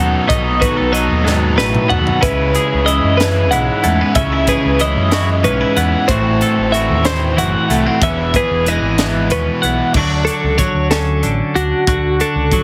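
Math rock and midwest emo in 6/8, playful and bright, heard as an excerpt through a heavily compressed, radio-like sound with light reverb. Two clean, twangy twelve-string electric guitars share the plate reverb: one plays accompaniment while the other, up front with tremolo, carries high arpeggios. Beneath them sit a dark, round overdriven fingered bass and a raw, double-tracked overdriven garage guitar riff that stops at 9.9 s as the harmony shifts to Dmaj7, while a crisp fusion kit with a punchy kick, high-tuned snare and sparkling cymbals in a small, pumping room plays a fill from 1.3 to 2.2 s.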